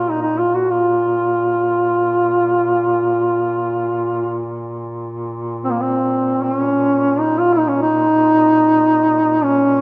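In free time, this mournful, longing Caucasian folk lament, cut from a longer piece, sets an up-front mellow duduk singing the melody with vibrato and scooped notes over a warm duduk holding a low drone with its own vibrato, both sounding distant and roomy in a moderate scoring-stage reverb.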